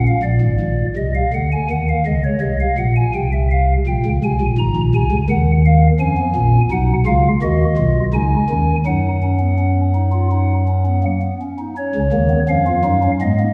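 A single pipe organ on a stopped flute stop opens the recording and carries all three voices of a baroque-style fugue on its own from 0.0 to 13.5 seconds, a short passage cut from a longer piece. The mood is contemplative and serious, moving at a steady 83 BPM in straight 4/4 time in F# major, with the organ tuned to A4 = 442 Hz. Its tone is soft and hollow, with a gentle chiff at the start of notes and a mellow baroque voicing that spans from the low G#1 up to A#5. A wet scoring-stage reverb with a 1.8-second decay surrounds the instrument, and the listener seems to hear it from further back in the room. The harmony moves through chords such as D#m, C#, B/D#, and F#5, before a new section begins at 11.8 seconds and settles on F#5/C#.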